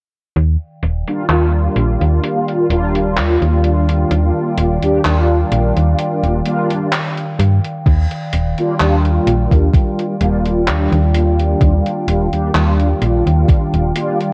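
A snappy, metallic slap-like FM bass sits up front in this woozy, faded vaporwave fragment at 64 BPM in Eb major, resting on an Ebmaj9 chord beneath a nostalgic, lo-fi tape-like pad with chorus and built-in reverb, dark, round synth brass with ensemble chorus and tape echo, and a gated 80s drum machine of crash cymbal, handclaps and hi-hat that is overdriven and filtered and carries a filter sweep from 0.4 to 7.9 seconds, when a thumpy overdriven electronic kick drum enters, all coloured by worn cassette warble and pitch drift.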